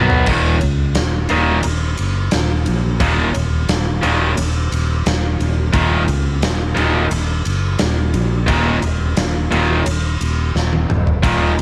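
A heavy, high-gain electric guitar sits up front with a bright, distorted tone, playing a picked riff in this aggressive hard rock clip cut from a longer piece. It moves at a straight 88 BPM in 4/4, in Eb minor with tuning at A4 = 442 Hz, and the harmony rests on a single Eb5 chord. Behind it, a cranked stack guitar also plays a riff in the background with an overdriven, picked edge, and both guitars carry a cassette-tape grit. A growly, direct fingered electric bass holds the low end up front. A huge arena kit brings a punchy kick, a medium-tuned snare, toms, crash and ride cymbals, a pumping hall-like room sound and its own cassette coloring, opening with a fill and adding another from 10.5 to 11.2 seconds. The home cassette recording has little reverb, giving the whole clip a dry, raw character.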